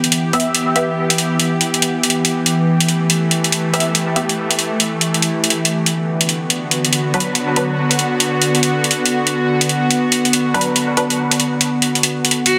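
This dark, brooding deep dubstep excerpt opens with a tense, string-like bowed-like drone holding sustained chords from D3 to G4, its detuned sawtooth body laced with a noise layer, vibrato and built-in reverb, while overdriven metallic electronic hi-hats sit up front from the start. The tempo is 141 BPM in 4/4 with a half-time feel and a 62% swing on the sixteenths. The harmony moves from Em to Bm at 5.7 seconds. Four short, muted filtered dub chord stabs, first heard at 0.3 seconds, pluck in with a fast attack and short decay, treated with lush chorus and dub echo. At 12.5 seconds a clear, focused solo cello touches F#4 with vibrato, joined by a very quiet electronic riser. A moderate hall reverb and a dense, heavily limited modern master frame the whole, and the clip is cut from a longer piece.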